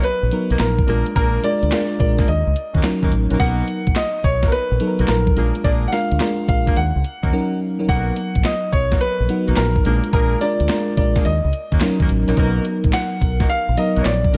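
New jack swing R&B at 107 BPM with a swung sixteenth feel, this bouncy, punchy excerpt sets a polished grand piano melody over a lush, dreamy FM electric piano with a soft pad layer and chorus, loose jazz-style horn stabs with light vibrato, a crisp 8-bit drum machine of thumpy kick, snare, hi-hat and handclaps that drops out briefly at 7.3 seconds, and a deep, round fingered electric bass entering at 0.2 seconds, all cycling through Bmaj7, Bb7 and Ebm7 in a dark production with light digital reverb.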